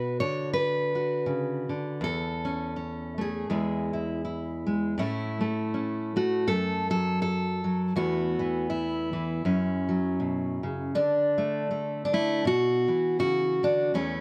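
Folk fingerstyle in a gentle, pastoral mood with a light swing, this brief passage from a longer piece features a lone fingerpicked steel-string dreadnought acoustic guitar, dark and full-bodied, placed up front and captured with close, detailed microphones and light reverb, moving through chords like Bm, A/E and E before settling into a second section at 5.0 seconds.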